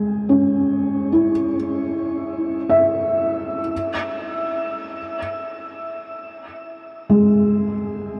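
A dark, warm production wraps this brief ambient fragment in a long, shimmering reverb that hangs in the air for 8.7 seconds. A felt-muted upright piano plays alone throughout the 8.2 seconds, sitting up front with a soft, boxy tone and the audible clack of its action. Thick felt dulls each note into something mellow and intimate, moving between G#3 and E5 over a C#m/G# harmony. A diffuse ambient delay on the piano blurs its phrases into the surrounding wash. The mood is luminous and peaceful, a quiet glimpse cut from a longer piece.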